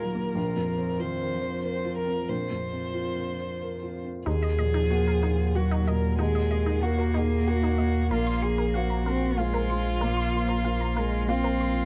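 A fragile, reflective neoclassical passage for piano and strings opens with a felt-muted upright piano, a dark, woody violin melody, a cello second line and a very quiet analog pad all sounding together. It moves in a rubato 3/4 at 94 BPM in Eb dorian, tuned slightly sharp to A4 = 441 Hz. The soft, mellow piano carries audible action noise, the violin sounds distant with vibrato, and the cello is intimate and smooth, bowed sul tasto with a gentle attack beneath a moody, deep pad of sustained chords that swells in slowly and fades long. At 4.3 seconds the harmony shifts from Bbsus2 to Ebmadd9, and a thick, saturated sub bass enters up front. A juicy, squelchy pluck joins at the same moment with resonant, detuned arpeggios treated with chorus, phaser and tape echo, continuing as the Bbsus2 chord returns at 8.1 seconds and dropping out at 11.7 seconds. The close, detailed recording has little reverb, and the clip is cut from a longer piece.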